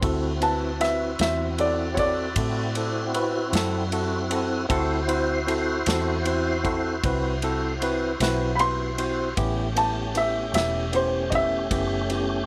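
In a light reverb, this rollicking, soulful slow-blues excerpt in 12/8 puts a woody upright piano out front as the soloist throughout, backed by a barky tine electric piano through a combo amp, a full tonewheel organ holding chords through a slow rotary speaker with light overdrive and chorus vibrato, a round, foam-muted fingered electric bass, and a small-room acoustic drum kit with punchy kick, snare and dark ride cymbal, as the harmony moves from D9 to A9 at 9.4 seconds.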